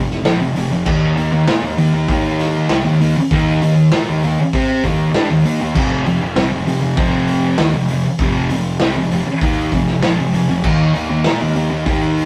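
A rough rehearsal-room recording with moderate studio reverb carries this raw, rowdy garage rock excerpt at 98 BPM in a straight 4/4, where a thick, dark, double-tracked fuzz guitar riff sits up front over F5 and Eb5 power chords, a growly, punchy overdriven picked bass hums in the background, and a gritty drum kit with crash, hi-hat, snare and a boomy kick enters at 0.1 s.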